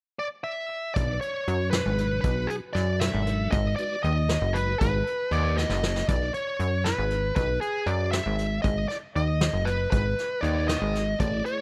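Tense and driving, this progressive instrumental cut from a longer piece moves in an uneven 5/8 meter. A smooth, dark overdriven lead guitar carries the melody up front from 0.2 seconds, joined at 1.0 seconds by a punchy, funky analog bass with a plucky sawtooth bite, a vintage brush kit with a punchy kick and rolled-off top, and a piping tonewheel organ with key click and fast rotary swirl sitting in the background. The mix is dry of reverb but heavy with tape echo, and a drum fill at 5.6 seconds leads into a second section where the organ drops out until a brief return near the end.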